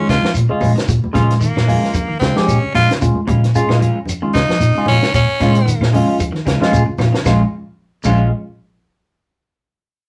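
A rough rehearsal-room recording in a wet studio ambience carries this defiant, intense afrobeat fragment in Bb minor at 113 BPM, swung lightly on the sixteenths over a Bbm7 chord. A raspy, gritty tenor saxophone solo with scooped notes and vibrato sits up front until 5.9 seconds beside a bright, barky tine electric piano treated with phaser, while two clean electric guitars play in the background, one with dark arpeggios and one with warm stabs. Underneath, a round, foam-muted vintage electric bass, a compact cocktail kit with a punchy kick, high-tuned snare and shadowy cymbals, grainy shekere, woody claves and ringing congas struck with hard hands drive the groove, and the drums fill at 7.0 seconds.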